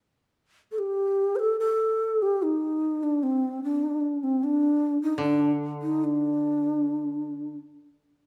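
Japanese traditional chamber music, calm and austere at a rubato 76 BPM in D, in which an airy, hollow bamboo shakuhachi carries the melody up front with vibrato and a crisp, chiffy attack from 0.7 s, joined quietly at 5.2 s by a bright, woody, dry koto played with fingerpicks on a low D, set in a recital-hall reverb in this short excerpt cut from a longer piece.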